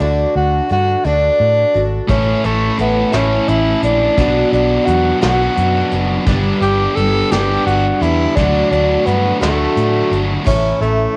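Folk rock with a heartland rock lean unfolds in a lilting 6/8 in this short cut from a longer piece, its mood warm and jangly. A breathy tenor saxophone carries the melody up front, intimate and whispered, with a soft attack, light vibrato and a touch of tape echo, over a shimmering, octave-doubled picked twelve-string acoustic guitar and a dark, round, foam-muted fingered electric bass. At 2.1 s the band fills in: a double-tracked overdriven electric guitar plays a riff, a soft brush kit sounds distant and roomy with a punchy kick and crash cymbal, and a very quiet, flute-like tonewheel organ holds sustained chords with chorus vibrato and key click. The harmony moves steadily from D through A, Bm and G before returning to D and landing on A at 10.5 s. Cassette tape colours the saxophone, acoustic guitar, electric guitar and drums, lending the home recording a homespun, intimate character within a moderate room reverb.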